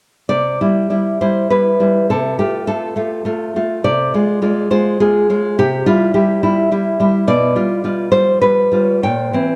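Sunny and nostalgic, this short fragment of a romantic solo classical guitar piece unfolds in a gently flexible rubato three-beat lilt. A fingerpicked nylon-string guitar sits up front from 0.3 to 9.6 seconds, its acoustic tone marked by audible finger squeaks and touched with analog delay, moving through a harmonic drift from C to F and F minor over a C bass before turning toward G7 and C7. An echo chamber reverb and cassette tape character give the sound a hazy, echo-heavy, faded-photograph glow.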